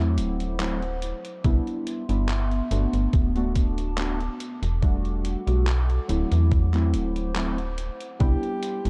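Warbly, detuned lo-fi synth keys with chorus and tape echo and a snappy, metallic FM bass open this nostalgic, woozy vaporwave excerpt at 71 BPM in E minor, joined almost at once by a dark, tape-like pad and a faint, off-pitch 8-bit drum machine of handclaps and hi-hat. A thumpy electronic kick comes in at 1.4 seconds over a lightly swung sixteenth-note feel as the chords drift from D7 through Cmaj7, Bm7/D and Em11. At 8.2 seconds a breathy, intimate alto saxophone slips in on a single scooped, whispery G4, set in a shadowy, lightly reverberant digital ambience.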